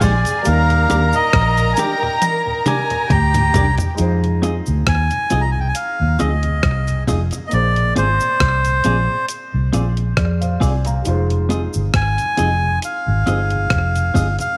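A reedy, breathy melodica carries the melody from the first moment of this bittersweet, smooth lovers rock reggae excerpt, its nasal tone sitting up front and trailed by tape echo. Alongside it, a bowed studio string section plays a soft-attack second line with vibrato, intimate and close, until it drops out at 4.0 seconds, just as a drum fill that began at 2.2 seconds gives way to the next section. The clean 12-bit drum machine has a sampler-style, thumpy kick with hi-hat, rim click and toms, while a round, foam-muted fingered electric bass sits prominently beneath it. A compressed, hollow-body semi-hollow guitar plays picked, clean stabs through spring reverb, and a dark concert grand piano with deep bass adds accompaniment touched by slapback echo. A very quiet, flute-like tonewheel organ with key click and rotary speaker, plus a cabasa tucked in the background, fill out a gently swung groove that moves through Ebmaj7, Fm7 and Bb9 under light studio reverb.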